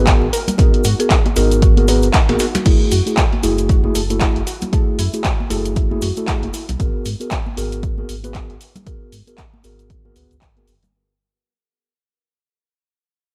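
A mellow tine electric piano opens this moody, smooth deep house excerpt at 116 BPM with up-front stabs carrying 12-bit sampler grit, tape echo and sidechain pumping, over a deep sine sub bass with octave, as the chords move from G#m9 to F#m9 at 2.7 s and back at 6.8 s. A punchy electronic kick sits up front beside a large-room analog drum machine of handclaps, hi-hat and crash, while soft-handed bongos and congas, a grainy cabasa, a very quiet compressed sampler-style kit with a fat snare, and a warbling, detuned lo-fi pluck playing chorused arpeggios fill out the 16th-note swing; the pluck and kit drop out by 6.8 s. A buzzing, woody marimba note flickers briefly just after 1 second, and the dry, gritty recording fades out after the opening drop.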